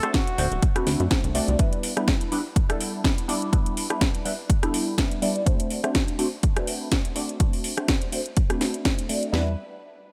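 A swung, groovy 124 BPM pulse in E minor drives this sensual filtered disco house excerpt, where punchy kick and cracking snare sit up front with metallic, pumping hats and very quiet maracas, a funky detuned polysynth comp with chorus, phaser and 12-bit grit carries the D7 to Em7 changes under a filter sweep, a plucky wave-folded analog bass appears from 0.4 to 1.6 seconds and returns briefly at the close, and a mellow trumpet section offers only a brief F#4 at the very start amid digital ambience.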